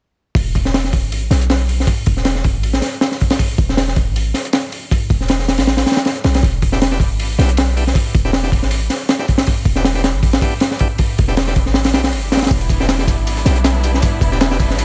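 A small-room mix opens this frenetic, dark drum and bass cut at 158 BPM in E minor, where a crunchy, saturated, up-front breakbeat kit with a tight kick and high-tuned snare drives over a deep, boomy 808-style bass from 0.3 seconds, all resting on a single Em7 chord. At 6.7 seconds a bright, shouting tonewheel organ adds lightly overdriven stabs through a stopped rotary speaker and dub echo. From 12.5 seconds a clear, bowed studio string section holds sustained chords with vibrato, while a compressed, pitched-up sampler-style kit of hi-hat, snare and tambourine sits high-pass filtered in the background.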